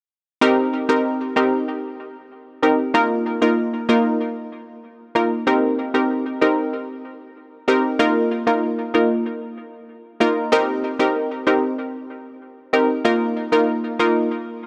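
An analog pluck carries this short dancehall excerpt alone, sitting up front with a bright, round sawtooth tone that is detuned and layered with a touch of noise. Its fast attack and decaying notes, shaped by chorus, tape echo and an evolving filter sweep, stay between Bb3 and Bb4 from 0.4 to 14.3 seconds. The harmony alternates between Cm7 and Bbsus4 in C minor, changing roughly every two and a half seconds. At 95 BPM in a straight 4/4, the mood is bouncy yet hypnotic, with the tuning set slightly low at A4 = 438 Hz. Light reverb frames the single part in a modest space.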